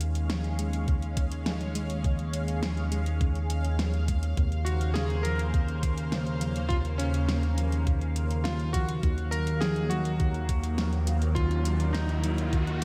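Synthwave at 103 BPM in Eb dorian, cinematic and driving, built on a fat, detuned sawtooth bass and an up-front thumpy electronic kick, with a silky string pad pumping under ensemble chorus and phaser, an overdriven pop kit of fat snare and metallic hats, a very quiet round pluck tracing dark arpeggios, a bright, cutting electric grand piano carrying the melody through chorus and delay from 4.6 seconds, and a background riser arriving at 10.7 seconds, all set in a dreamy, reverb-soaked hall over the chords Db/Eb, Bbmadd9/Eb and Ebmadd9.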